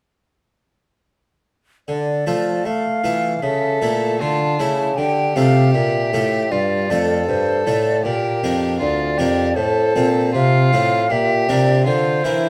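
At 1.9 seconds, a flute, harpsichord and bassoon begin together in a grave, introspective baroque-style sonata movement in D minor. The tempo is a steady 78 BPM in 4/4 with a straight feel. The flute carries the melody with a pure, hollow tone, tongued notes and vibrato. Beneath it, the close-miked harpsichord sounds dry, full and up front, its plucked French-style voicing doubled across two sets of strings. The bassoon holds the bass line with a mellow, lightly vibrating classical tone. From 3.4 seconds a single bowed violin adds a focused, smooth-topped second line, its vibrato close and present, while the harmony moves from D minor through A, B-flat and F within a moderate recital hall reverb with a 1.4-second decay in this short passage cut from a longer piece.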